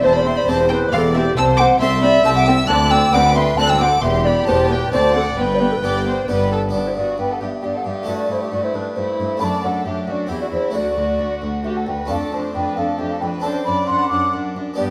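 A moderate recital-hall reverb surrounds this lively, festive fragment of a baroque-style concerto movement in G major, moving at 135 BPM in a straight 3/4 with tuning set slightly below modern pitch. A mellow, hollow wooden flute carries the melody from G4 up to D6, its pure, tongued tone with vibrato sitting at a slight distance yet standing out as the loudest voice. A violin section also carries the melody with gut-string, period-style bowing and light vibrato, while a second violin section plays a supporting line. A close-miked, dry French-style harpsichord fills in the accompaniment with a full, plucked sound. Beneath, a smooth-topped viola section and a reedy cello section sit in the background, and a double bass section adds depth until 6.7 s, where the opening passage gives way to a second section. The chords move from C/E and Am/C through Em, D7 and G, then on to Am7/G, D/F# and a darker Dm/F before ending on D7/F#.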